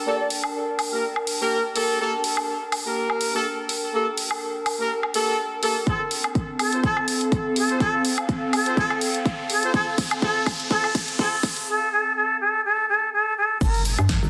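An airy, expressive concert flute carries the melody of this aggressive, swaggering bass house build-up, its tongued, vibrato-laden phrases sounding distant yet up front through a digital delay from 5.9 seconds. Tight, jazz-style horn stabs with a warm, present tone sit beneath it through a low-pass filter, delay and sidechain pumping. A warbling, nostalgic, lo-fi pad of detuned square, triangle and sawtooth waves adds mellow, slow-blooming texture with chorus, phaser, built-in reverb and pumping. A punchy, layered house kit of snare, hi-hat, crash and woodblock drives the groove, joined at 5.9 seconds by a punchy electronic kick. A drum fill from 5.9 seconds and an electronic riser from 7.5 seconds build tension over a move from Gmadd9 to F. At 13.6 seconds an impact lands on Gm alongside a hollow, bouncy, dark FM bass with overdrive and a very quiet, grainy egg shaker, all set in a lush hall reverb under a dense, heavily limited modern master.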